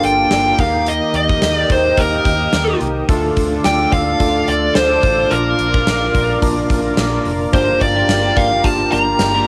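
A hazy, tape-worn home recording in a small booth gives this short 1980s-style pop excerpt a romantic, nostalgic glow at 108 BPM, with a light swing on the sixteenths. Up front, a dark, overdriven lead guitar carries the melody, smoothed by plate reverb, over a bright tine electric piano heard as if through its built-in speakers. A gated drum kit with a punchy kick, medium-tuned snare, hi-hat and tambourine sets an airy, polished pulse, while a round, foam-muted fingered bass sits low underneath. In the background, a swirling, slow-attack analog pad drifts through phaser and chorus, and fat, nasal synth brass stabs add bold, detuned color. The chords move from Gm7 through Eb, Dm and Bb before returning to Gm7 at 7.5 seconds, where a clean, compressed electric guitar riff joins with an ensemble chorus shimmer.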